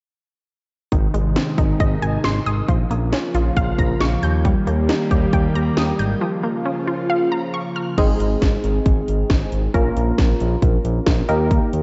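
Cool and driving, this synth-pop passage, cut from a longer piece, rides on an up-front house drum kit with a punchy kick, cracking snare and metallic hats, under a smooth sawtooth synth bass with vibrato. A swirling, detuned analog pad with phaser and chorus holds sustained chords while a warbling unison pluck spins bright arpeggios through a diffuse ambient delay; both fall away near 8.0 seconds, when a dark, funky polysynth comp with chorus takes over the accompaniment. The dreamy mix is soaked in a lush hall reverb, and its highs are rolled off.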